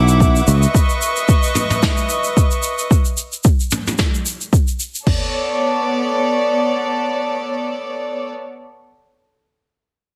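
Rich, earthy bowed chamber strings with light vibrato hold sustained chords over C#m9 and then Bm9 in this smooth, relaxed sunset chillout excerpt at 111 BPM with a swung 16th-note feel. A bright, growly fretless electric bass sounds alongside them from the start, but only briefly, stopping at 0.6 s. Beneath them run an overdriven electronic deep house kit with a deep kick, crash and toms, and a softer vintage brush kit of shaker, snare and toms with a rolled-off top, both drum kits dropping out by 5.2 s. The mix sits in a moderate studio room reverb with a heavily compressed, radio-like sound.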